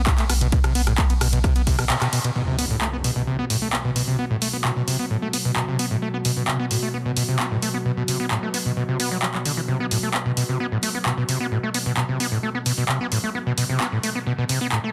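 A straight 4/4 pulse at 131 BPM drives this dark, relentless peak-time techno cut, with a punchy electronic kick and a thick, saturated sub bass pumping through the opening drop and both gone by 1.9 s, while an up-front analog drum machine of handclaps, hi-hat, ride cymbal and rim click runs throughout. A screaming, squelchy sawtooth acid riff, distorted and treated with chorus and digital delay, takes on a filter sweep from 2.4 s, when an electronic impact lands and the harmony settles on B5. An evolving analog drone of sawtooth and pulse-width-modulated tones enters with a slow attack at 2.9 s, all set in moderate plate reverb within a dense, heavily limited master.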